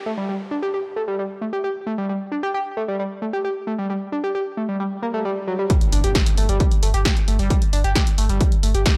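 Industrial and hypnotic, this driving peak-time techno excerpt runs at 133 BPM in a straight 4/4. An overdriven synth lead carries the riff from the start, a screaming, guitar-like sawtooth and pulse-wave tone with vibrato, distortion, tape echo and sidechain pumping, sitting bright and up front. Behind it, a downlifter, swell and impact effect sits in the background, building through a swell from 5.0 seconds into the drop at 5.7 seconds. There a heavy, layered electronic kick lands up front, joined by a punchy analog drum machine playing hi-hat and snare with pumping on the hats, both carrying a tape-warm, small-room character. A deep, thick sine sub bass on G1 enters at 5.9 seconds, tube-saturated, low-pass filtered and sidechain-pumped. The sound is dry and gritty, with hardware transformer saturation and little reverb.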